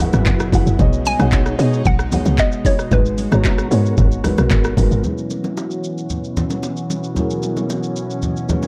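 Late-night and soulful, this amapiano excerpt opens on a drop where a hollow, bouncy square-wave pluck carries the melody over a tight, punchy log drum bass, a dark, boxy grand piano, a lush detuned unison pad with sidechain pumping, and soft, flute-like tonewheel organ stabs sitting in the background. An electronic R&B kit with a knocking kick, metallic hats, handclaps, rim clicks and shaker sits up front with 12-bit sampler grit, while ringing congas and bongos add hand percussion from a small room. At 5.0 seconds the bass, pluck and organ have stopped and a filter sweep takes over as the piano, pad and drums continue.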